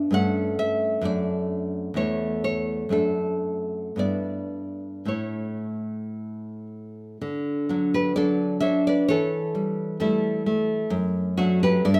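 Romantic solo classical guitar in D major, nostalgic and sunny, unfolds at a rubato 54-67 BPM in 2/4 as a fingerpicked nylon-string guitar, warm and up front, moves through inversions like A7/G and D/F# before a new section begins at 7.2 seconds and settles on D/F#, all bathed in a moderate recital-hall reverb, tuned slightly below standard pitch and cut from a longer piece.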